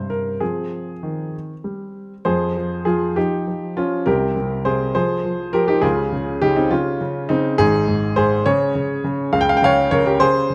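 A lilting six-eight pulse, felt in dotted quarters, moves with a free rubato that lets the phrasing breathe in this classical-period piano sonatina. The mood is cheerful and elegant, and a grand piano plays solo throughout the 10.5 seconds, reaching from deep bass notes up into the upper treble. Its tone is clear and natural, placed up front with an intimate closeness, so the mechanical sounds of the action can be heard beneath the notes. A brief opening phrase gives way at 2.3 seconds to a restatement of the same material, which carries the passage through its harmonies until the cut, since the clip is taken from a longer piece. Close, detailed microphones capture the instrument, while a moderate recital-hall reverb adds a gentle sense of space around it.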